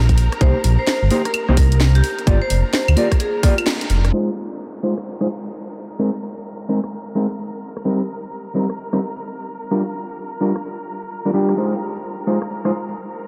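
Awash in a dreamy cathedral reverb and softened by a low-pass filter, this moody, soulful excerpt from a longer UK garage piece rolls along in a two-step groove at 129 BPM in F dorian, its 16ths swung. In the opening section, a deep, rumbling detuned saw bass and a tight, up-front electronic kick anchor the groove, while a bright vibraphone struck with hard mallets sings a ringing melody through tape echo. The band hits an accent as the kick drops out, and from 4.2 s a faint electronic downlifter sinks into the background. A layered garage kit of cracking snare, hi-hat, rim click, claves and shaker keeps the two-step shuffle going to the end, and a mellow, clean electric guitar plays fingered stabs through analog delay, with a filter sweep running across the passage. Beneath it all, a lush, bowed studio violin section holds dark sustained chords with expressive vibrato and portamento, roughened by vintage 12-bit sampler grit and pumping under sidechain compression. 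The harmony moves through Cm7, Gm7, Fm7 and Bb9sus4 before circling back to Cm7, Gm7 and Fm7.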